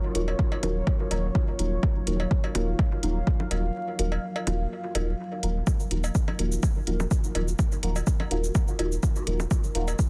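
A lightly swung pulse drives this hazy, meditative dub techno excerpt, with an overdriven, up-front electronic kick and metallic, gritty hi-hat and cabasa joined by layered cowbell and bongos that pump against the kick and trail off in dub echo. A round sine sub bass pumps beneath soft, detuned chord stabs on an E-flat minor add-nine chord, which drift through chorus, phaser and echo. A moody, slow-blooming sawtooth pad sits low in the mix until it stops at 5.7 s, after a break from 3.8 s, and the whole dense, heavily limited master is dry and dusted with vinyl crackle.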